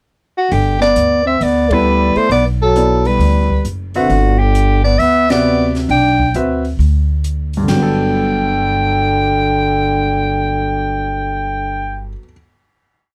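Swung eighths in a two-feel from a woody pizzicato upright bass and an open drum kit keeping time on the hi-hat under dark cymbals carry this brief, spiritual modal jazz piece, where a mellow, distant soprano saxophone sings motif-based phrases over a breathy, whispered trombone harmony line mostly in thirds, a warm grand piano joins at 1.7 seconds with syncopated quartal comping and audible action noise, and the drums stop as the band settles onto a Gmaj9 final chord from 7.7 seconds, all in a dry, close 1970s-style studio sound.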